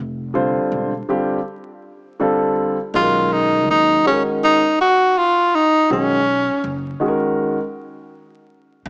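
A breathy tenor saxophone with subtone, vibrato, scooped notes and a slapback echo carries the jazz-style solo melody from 3.0 to 7.0 seconds in this cool, smooth jazz-hop excerpt at 81 BPM with swung sixteenths, over a dark, mellow baby grand piano with long sustain and a woody pizzicato upright bass, as the harmony moves from Fadd9 to Bmaj9 at 2.9 seconds beneath vinyl crackle, a small-speaker tone and light studio reverb.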